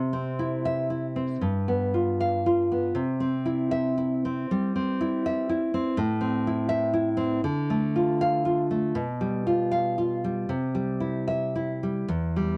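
A bright, full-bodied nylon-string guitar, fingerpicked up front with audible finger squeak, carries this tender romantic solo through a rubato 12.6-second fragment of a longer piece, moving from C through G7, Am and Dm back to C under light reverb and the warbling pitch drift of worn old cassette tape.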